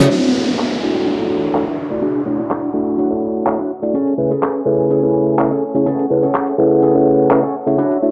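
A band accent opens this sunny, funky filtered disco house excerpt at 125 BPM in A major, where a barky, up-front tine electric piano through a combo amp and a twangy, picked guitar riff with an envelope filter ride over a gritty, compressed sampler-style kit of handclaps, hi-hat, shaker and snare, while a lush bowed violin section holds chords in the background over Dmaj9 moving to Amaj7/C#, an electronic downlifter sounds from 0.1 to 3.9 seconds, and a filter sweep runs through the whole passage inside a dry, hardware-toned mix with moderate echo chamber reverb.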